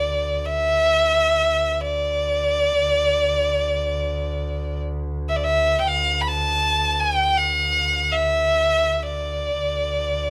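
Stately and festive, this short fragment of Arabic maqam music unfolds in free time in D maqam rast, tuned to A4 = 439 Hz. A single bowed violin carries the melody up front between D5 and B5, its tone rich, nasal, focused and boxy, with vibrato colouring each note. Beneath it, one bowed double bass holds a low D2 drone, rich, smooth and even, sitting at a distance and shaded with its own vibrato. Both instruments sound together from 0.0 to 10.3 seconds, the bass noticeably quieter than the violin. The pair play live in one room, and light reverb gives the small ensemble a natural sense of space.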